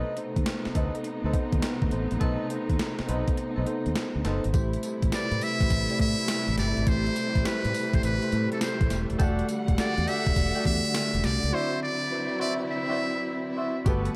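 Swung sixteenths at 103 BPM drive this slick, bouncy R&B cut in a new jack swing style, where an up-front gated 80s drum machine with a thumpy kick and gated-reverb snare sits beside a dark, round fingered electric bass, a clean tine electric piano, lush bowed strings with portamento, and mellow horn stabs with delay, while a buzzy, brilliant trumpet with metal mute carries the melody from 5.1 s over chords moving from B7b9 to D9, which arrives with a break at 11.5 s.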